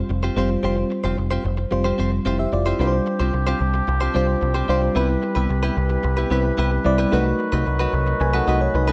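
A straight 4/4 pop groove at 111 BPM carries a nostalgic, uplifting mood in this short section cut from a longer piece. A round, dark picked bass sits up front beneath a warbling vintage FM electric piano, while a bright, compressed clean guitar plays a riff with subtle chorus and delay over chords moving from Fsus2 to G7sus4/C, Cmaj7 and B7/C. At 2.8 seconds a soft, distant woodwind section enters with mellow sustained chords, all in a light reverb.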